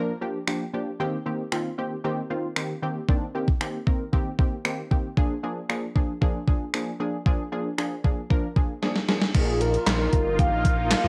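A punchy, funky polysynth comp with a chorused, tape-worn sheen opens this driving, energetic dance-pop excerpt at 115 BPM, moving through Gm7, Cm7 and Bb7 over a straight 4/4 groove from an up-front, overdriven 80s drum machine with a thumpy kick, gated-reverb snare, hi-hat, handclaps, finger snaps and crash. After a drum fill at 8.8 seconds, the music shifts to Bbsus4 at 9.3 seconds, where a fat, detuned analog bass, an evolving, bright supersaw swell and a round, horn-like synth lead with vibrato and tape echo all enter together. The whole has the light reverb and lo-fi character of a home cassette recording.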